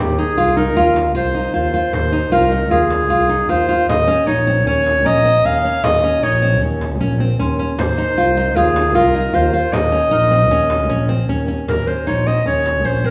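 Contemporary chamber music in a restless, shimmering 5/4 at 154 BPM, moving between F minor and E-flat, with a clear, roomy clarinet singing the melody up front over a dark, nasal bowed double bass with gut-string tone and light vibrato, full-bodied fingerpicked nylon-string guitar arpeggios, a small, band-limited frame drum struck with hard hands in the background from 1.0 seconds, and a bell-like, airy celesta ringing softly behind them that briefly sounds at the start and returns at 5.0 seconds, all bathed in the lush reverb of a recital hall.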